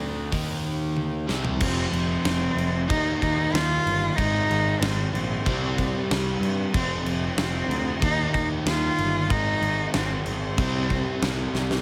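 A clear, focused cello carries the melody up front, bowed with vibrato by a single close player and touched with slapback echo, over this aggressive, driving hard rock excerpt. Beneath it, a double-tracked, overdriven semi-hollow guitar picks the riff while a punchy, fuzz-laden electric bass holds down the low end. A huge arena drum kit with a fat snare and punchy kick enters at 0.3 seconds, plays a fill from 1.0 to 1.6 seconds into the main section, and fills again at 11.5 seconds, all in a small room with light reverb.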